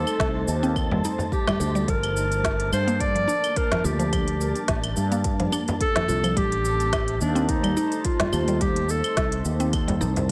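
A lightly reverberant, mellow mix opens this warm, mystical excerpt of organic downtempo, cut from a longer piece and moving at 107 BPM in 4/4 with a gentle 16th-note swing. A breathy, jazz-styled clarinet sits up front as the solo melody, its clear subtone colored by light vibrato and a digital delay, before it drops out at 9.5 seconds. Beneath it, a growly fretless electric bass with analog chorus holds the low end, while a woody, round mallet-like synth pluck spins arpeggios through chorus, phaser and delay. A cloudy, detuned granular pad and an airy, wind-like tuned noise texture drift in the background, the pad pumping with sidechain compression. The rhythm comes from an overdriven electronic kit with a woody snare, smooth hats, cabasa and claves, a deep electronic kick re-recorded in a large room, and a soft-handed acoustic frame drum that joins at 0.9 seconds. The harmony moves from Am7b5 to Gm7 and back to Am7b5.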